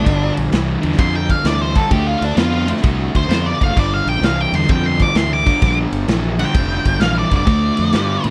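A swung 4/4 groove at 130 BPM drives this smoky, heavy slice of blues rock and southern rock, cut from a longer piece and played by a power trio on a dry, close 1970s-style studio sound. A dark, picked octave-fuzz lead guitar solos up front from the opening second, over a double-tracked, overdriven garage guitar riff and a growly, punchy fingered bass soaked in fuzz, all moving through G7, Dm7 and Gm7 before settling on Dm at 7.5 seconds. The garage drum kit comes in at 0.1 seconds with crash, ride, snare and a punchy kick, its sound gritty and saturated with a rolled-off top.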